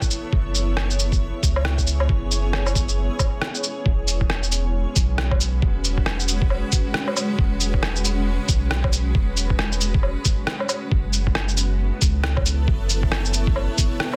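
Up-front, pitched-down shaker, rim click, woodblock and cabasa, muffled and tape-warm with soft clipping on the snare, drive this ghostly, melancholic future garage excerpt at 136 BPM with a swung 16th feel, joined by a thumpy, compressed kick that drops out from 3.4 to 3.9 seconds, a deep, round, sidechain-pumped dub sub bass, and a cloudy, detuned granular pad whose bright, blurred chords move from F#m7 to E and back to F#m7, set in a dense, heavily limited mix with little room reverb.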